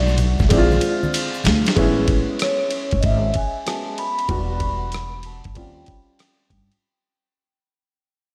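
A woody, intimate upright piano with audible action noise and a low-pass filter opens this cool, swung jazz-hop excerpt beside a bright, pizzicato upright bass. Close tube shaker and congas sit in the background until 1.8 s, while a gritty, compressed sampler-style drum kit with overdrive and a thumpy kick plays a fill from 0.5 s up to that point. A mellow vibraphone with soft mallets, slow motor vibrato and a diffuse ambient delay carries the melody from 2.4 s, as the dreamy, hall-soaked mix fades out and a filter sweep runs through its closing seconds.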